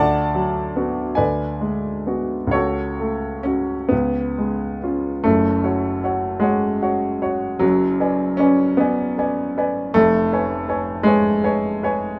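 A clear baby grand piano, up front and natural with short sustain, carries this brooding, passionate romantic character piece alone from 0.0 to 12.2 seconds, moving in a slow, rubato 6/8 in F# minor at 42-55 BPM by the dotted quarter. Its harmony passes through Bm/D, G#m7b5/D and F#m/C# to a C# chord before a new section begins at 5.2 seconds on F#m, continuing to G#m7b5/F# and C#7/E#, with the range stretching from E#1 to A5. The close, detailed recording has little room reverb, and the passage is cut from a longer piece.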